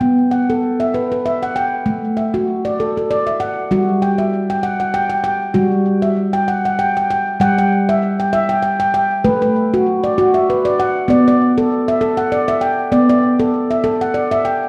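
World meditative music at 98 BPM in 3/4 with a light swing, this gentle, hypnotic fragment of a longer piece features a solo handpan spanning G3 to G5 across its full 14.7 seconds. The nitrided steel tone is ringing and mellow under soft fingertips, close-miked and up front with delay, set in a recital hall reverb within a dark production. The harmony drifts from B5 through A5 to Emadd9/G, then shifts at 7.4 seconds into a second section that returns to A5 and settles on Bm.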